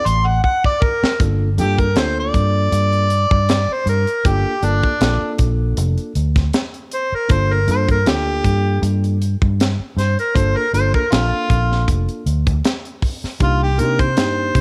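The sound is dry and close, with little reverb, and this brooding, soulful slice of straight-eighth soul blues is cut from a longer piece. A punchy harmonica with a smooth top and a touch of overdrive carries the melody up front, taking a short solo at the start as bass and drums enter almost at once, the drums playing a fill before the band settles in at 1.2 seconds. A tight funk kit recorded in a small room sits forward in the mix, its high-tuned snare, tight kick and hi-hat giving the groove a crisp, slightly swung edge. Underneath, a vintage muted fingered electric bass adds a dark, round, foam-muted low end, amped and placed up front. A clean tine electric piano played through a combo amp comes in at 1.2 seconds and sits lower in the mix, holding a Gm7 chord before moving to Cm7 at 13.4 seconds.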